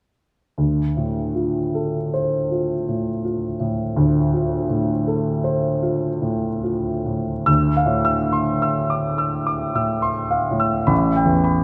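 Rubato, uneven beats pull the three-beat metre this way and that, giving this short excerpt of an impressionist classical solo piano piece a drifting, slow-breathing feel. A grand piano carries everything alone from 0.6 s to 11.6 s, its tone clear and present, placed up front and spanning from deep in the bass at A1 up to E6. The harmony rests on a Dm7 before shifting to a Dm9 at 7.5 s, where a second section begins, and then moves to an A7sus2 near the close. A moderate reverb, like that of a scoring stage, lends a soft halo around the notes, deepening the wistful, hazy mood. The tuning sits slightly above standard pitch, with A4 at 445 Hz.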